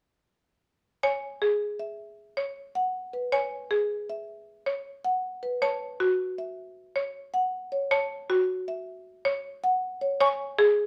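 Two up-front marimbas open at 1.0 s: one with soft mallets carries a mellow, rounded melody on rosewood bars, while a buzzing hardwood marimba with hard mallets plays dry, vintage-sounding arpeggios beneath it. This hypnotic, propulsive minimalist pattern music moves at 157 BPM in a straight 6/4, set in light reverb. At 10.2 s a bright silver concert flute adds a fleeting, airy arpeggio note with vibrato just before this cut from a longer piece ends.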